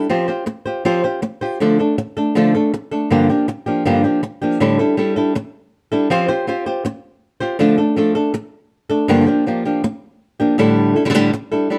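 A fingerpicked acoustic flamenco guitar sits up front and plays alone for the whole 11.8 seconds of this intense, dramatic flamenco excerpt, its range running from G2 to C5 and the occasional finger squeak audible on the strings. The guitar cycles twice through a brooding progression of Fsus2, Dm, Gm7 and A7sus4, with the second pass beginning at 4.6 seconds. Light reverb and a dark, warm production give the solo an intimate, shadowy weight.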